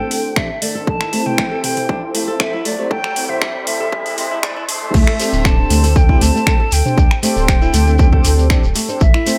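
A straight 4/4 afro house groove with a warm, earthy mood sets a pure, vibrato-tinged silver concert flute melody over fingerpicked flamenco guitar arpeggios and dark, detuned synth brass stabs, with the guitar and brass both filter-swept and pumping against a punchy, up-front electronic kick and an overdriven afro-pop kit of metallic hats, finger snaps, toms and crash. A background riser builds until the drop at 4.9 s brings in a deep, round analog bass and a grainy shekere, all in a light, small-room ambience.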